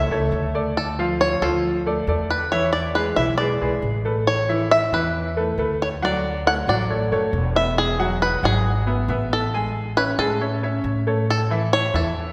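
A reverberant concert-hall acoustic with a long, church-like decay surrounds this short cut from a longer Cuban son and guajira piece, relaxed in a straight 4/4. A twangy bluegrass banjo, played with fingerpicks, carries the melody up front with a percussive, acoustic bite. Alongside it, a baby grand piano spins brilliant, short-sustained arpeggios across a broad register, while a woody upright bass with gut strings plays pizzicato, thumpy and dark, anchoring the low end. All three parts play together from 0.0 to 12.3 seconds, moving through a progression that begins on a rootless F#m7 and passes through Dm, E7, Aadd9, Dmaj7 and Eadd9 before settling on Amaj7 and a closing A5 at 11.3 seconds.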